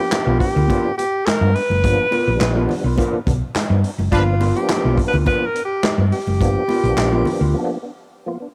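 A strutting, energetic funk groove at 105 BPM in 4/4 with a straight feel, sitting in G mixolydian on a G7#9 chord and cut from a longer piece. A clear, up-front alto saxophone carries the melody with vibrato and a smooth top, while a fat, lightly overdriven tonewheel organ punches out stabs through chorus vibrato and a slow rotary speaker, its key click audible. A hollow-body short-scale electric bass sits prominently underneath with a dark, round, amped tone and tube saturation, joined by a mellow, clean electric guitar whose fingered accompaniment shimmers with harmonic tremolo. A swinging big-band drum kit with a punchy kick, medium-tuned snare, hi-hat and handclaps drives the groove from a big natural room, and ringing congas add close, dry percussion in the background. A soft-attack horn section slips in for a brief moment at 4.1 seconds, the drums and congas drop out at 7.4 seconds, and the organ carries on through a break until 8.5 seconds, all colored by the character of a home cassette recording in a small room with light reverb.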